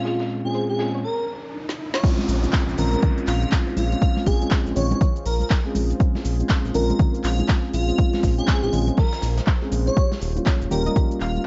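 Deep house with a warm, smooth mood, this short cut from a longer piece opens on a mellow tine electric piano playing stabs through a filter sweep, joined by an airy, dreamy lead melody with chorus and analog delay, a soft round pluck arpeggio, a riser and a faint gated 80s kit of hi-hat and snare in a bright stone room. A deep, moody ambient pad with a warbling, vintage character sustains very quiet chords from 1.4 seconds, and after a brief break a layered deep house kit enters with a drum fill at 1.7 seconds that leads into the drop at 2.0 seconds. There the overdriven, punchy electronic kick sits up front, soon joined by a round analog bass with sidechain pumping, while the deep house kit adds crash, handclaps, smooth hats, shaker and a woody snare, and soft-handed congas and bongos sit very quietly beneath. The chords move from Bbm9 to Eb9 at 10.0 seconds, where the gentle pluck returns in the background with chorus, pumping and delay. 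The sound is dry, with little reverb and a cassette-tape dullness that rolls off the top end.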